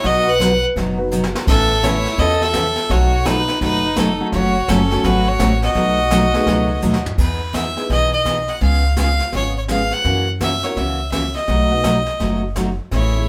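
A nasal, earthy fiddle sits up front with the melody throughout this cheerful, down-home western swing excerpt at 168 BPM with a swung 4/4 feel, joined by a focused second fiddle that drops out at 7.0 seconds and returns only at the very end. A picked dreadnought guitar, a worn and slightly detuned upright piano that pauses briefly early on, and a thumpy gut-string upright bass carry the accompaniment over chords such as B7, F#m, Emaj7 and C#7. A brushed drum kit with dark cymbals, a high-tuned snare and a boomy kick adds fills at 1.1 and 6.8 seconds, all captured as a band playing live in one small, reverberant room.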